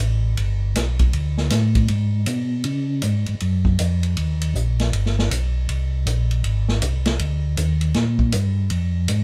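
Greasy and swinging, this brief soul jazz organ trio excerpt moves in 4/4 with a loose eighth-note swing. A mellow tonewheel organ carries the bass line from the first moment, its round, dark tone colored by chorus vibrato and a slow rotary speaker. At 0.4 seconds a vintage acoustic drum kit joins on hi-hat, ride cymbal, punchy kick and medium-tuned snare, sounding natural with a rolled-off top, all set in a moderate studio reverb.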